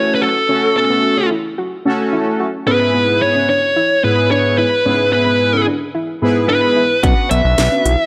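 Synth-pop in a melancholic yet driving mood, this excerpt opens with a dark, fuzz-distorted lead guitar carrying the melody up front with a slapback echo, over bold, brassy analog synth chords with chorus and a soft, round pluck spinning quiet arpeggios. The harmony moves from F#m to E/G#, and at 7.0 seconds the chord shifts to Bm as a thick sawtooth bass and a punchy house drum kit with cracking snare and metallic hats join for the final moment. A moderate plate reverb gives the whole mix a sense of space.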